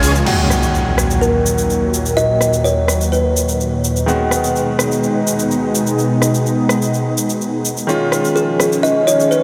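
A lush, detuned sawtooth pad with chorus sits up front in this emotional, powerful festival progressive house excerpt, holding thick sustained chords over an overdriven, layered big-room drum kit of cabasa, crash cymbal, hi-hat and rim click in a small room ambience. From 0.3 s, an electronic impact hits and a brilliant, intimate baby grand piano with audible action noise and long sustain accompanies through analog delay. A woody, ringing kalimba carries the melody from 1.2 s and returns at 8.4 s, also through analog delay, all within a dreamy mix soaked in huge ambient reverb.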